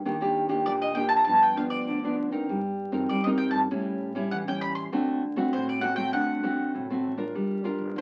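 A full-bodied, fingerpicked nylon-string guitar opens this yearning yet lively samba and choro passage from the start, with a woody pizzicato upright bass entering behind it at 0.1 seconds. At 0.7 seconds a picked bowl-back mandolin takes the melody up front, its doubled strings ringing over the guitar's classical accompaniment as the harmony moves from Ebmaj7 through G7, A7 and D7 to Gm7. A small, wet room surrounds the players, and the sound carries the crackle of a very old 78 rpm record, heard in a fragment cut from a longer piece.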